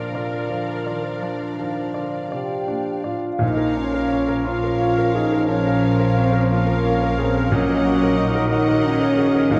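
A bright grand piano carries a passionate, lyrical melody in this rubato romantic movement in 12/8 at around 54-61 BPM in Bb major, set over sustained chords from a close-miked French horn section, smooth cello and viola sections, a very quiet bassoon, a roomy clarinet and focused violins in the background; a mellow flute section enters at 2.3 s, and as the music turns to Bb minor at 3.4 s, lush, expressive studio violins take up the melody alongside a faraway cor anglais, a bowed double bass section and round, soft-mallet timpani, within a dark, reverberant scoring-stage sound.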